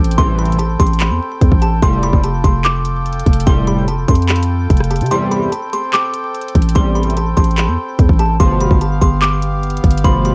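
A half-time trap groove at 146 BPM drives this brooding, melancholic hip hop excerpt in A minor, with an up-front electronic kit of hard-clipped kick, bright hi-hats, handclaps and rim clicks over a growling, buzzy 808-style bass. A woody, ringing kalimba carries the melody through digital delay above reedy, breathing harmonium chords, while from 0.2 seconds a soft, pure FM bell line with chorus and phaser sits in the background and an edgy, detuned sync-sweep polysynth adds sustained stabs. The dark production with vinyl crackle and little reverb moves through Am7, Fadd9 and G7, with a brief break at 5.1 seconds.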